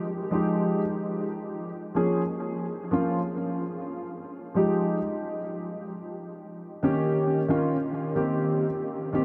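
Awash in a vast, dreamy reverb with a tail of 8.4 seconds, this short cut from a longer hip hop piece places a lone grand piano up front against a soaked, ambient space. The mood is mellow and cool, moving at 92 BPM in 4/4 with a swung sixteenth-note feel in F minor. The piano enters at 0.3 seconds and plays alone until 9.2 seconds, staying in a middle register from Eb3 to Ab4. Its tone is dark, smooth and vintage, with intimate, audible action noise and a shimmer from analog chorus and tape echo. The harmony drifts from Fm9 through Bbm7, back to Fm9, then Eb7, settling on Cm7 near the close.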